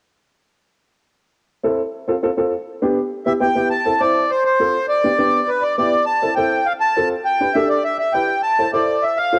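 The accordion carries the melody from 3.3 seconds, its reedy tone with slow beating sitting up front and sounding louder than the piano beneath it. This is a driving, fiery Latin piece in A minor at 203 BPM in a straight 4/4, cut from a longer performance. A dark upright piano enters first at 1.6 seconds as accompaniment, its woody, mellow voice close and natural, carrying the faint character of cassette tape. The harmony cycles through Am, F, G and Em, with an Em7 and a G5 colouring the repeats, as an opening passage gives way to a longer second section at 3.7 seconds. Both instruments play on until 9.4 seconds inside a lush hall reverb, captured as a home recording on cassette.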